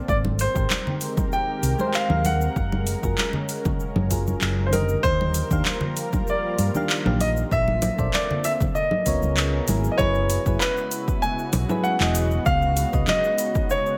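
A straight 4/4 groove at 97 BPM drives this smooth, sunny sunset chillout excerpt, built on a punchy, overdriven electronic kick, a produced R&B drum kit with metallic hats re-recorded in a large room, and thick-skinned congas sitting in the background until 9.8 s. A dark, round hollow-body bass and soft, mellow electric-piano-like synth keys with chorus and digital delay support an up-front grand piano melody carrying tape echo, while a lush, detuned sawtooth pad with chorus holds sustained chords underneath. The harmony moves through rich major ninth chords before settling on suspended ninths from 10.0 s, inside a lightly reverberant space.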